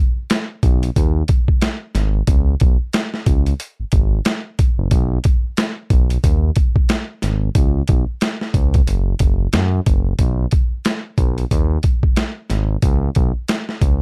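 A gritty, compressed, pitched-down sampler kit sits up front from 0.3 seconds, its thumpy kick, high-tuned snare and hi-hat riding a swung sixteenth feel in this nostalgic, warm boom-bap hip-hop cut from a longer piece. At 0.6 seconds a smooth synth bass joins, blending sawtooth and triangle tones into a nasal yet mellow voice that glides between notes with portamento, sustains with vibrato and keeps evolving. The dry, close sound holds through a shift to a new section at 10.2 seconds.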